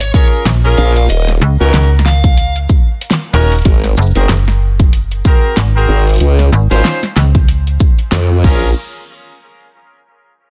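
Swaggering and playful, this glitch hop excerpt struts at 94 BPM with a 16th-note swing. A punchy, up-front electronic kick and a tape-warm pop kit with fat snare, metallic hats, shaker and crash anchor a snappy, metallic-attack FM bass and a sawtooth formant-sweep wobble bass, chorused and tube-saturated, that joins at 0.8 seconds. A dark, overdriven lead guitar with dub echo plays a brief melody until 2.6 seconds, while a tight, clear horn section punctuates the Bbm7, Ebm7, Ab9 and Dbmaj9 changes with sidechain-pumped stabs, all in a dense, heavily limited, dry mix that hits a band accent near 8.1 seconds.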